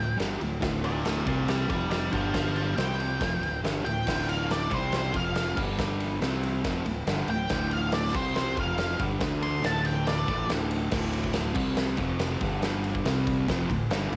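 Swaggering and gritty, this garage rock cut from a longer piece charges along at 140 BPM in a straight 4/4, centred on D minor and cycling through Dm, C5, F5 and G5 power chords. A dark octave-fuzz lead guitar carries the melody as a solo from the start, ranging from C5 to C6 with a distorted, tape-saturated edge until it drops out at 10.5 seconds. Underneath, a bright, double-tracked fuzz guitar sits up front picking out the riff in its low register, joined by a growling fingered electric bass whose overdriven tone comes through both direct and amped. The oversized low-tuned drum kit enters at 0.2 seconds, pairing a fat snare and boomy kick with crash and ride cymbals in a stone-room acoustic whose rolled-off top sounds mid-forward and close. Once the solo ends, the final stretch from 10.9 seconds leaves riff, bass and drums driving through the chord cycle, all of it wrapped in the small-room ambience of a homemade cassette recording.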